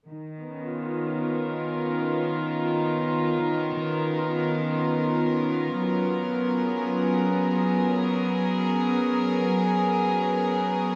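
Hazy and meditative, this ambient excerpt in free time features a chamber string section holding sustained, softly attacked chords from C#13 to G#m11 at 5.8 seconds, its pure, floating tone filtered and set distant yet up front within a dreamy, huge reverb.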